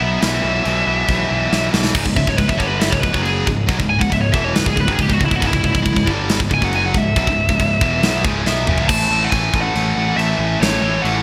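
A dark, distorted lead guitar with digital delay, a bright, double-tracked high-gain riff guitar and a punchy fuzz bass open this aggressive, relentless heavy metal cut in C# minor at 138 BPM. A tight, up-front drum kit with gated reverb, china and crash cymbals and toms joins at 0.2 seconds in half time, and after a drum fill the lead breaks into a solo over C#m from 2.0 to 8.9 seconds before another fill returns the band to half time, all set in a lush hall with a bright 1980s-style digital sheen.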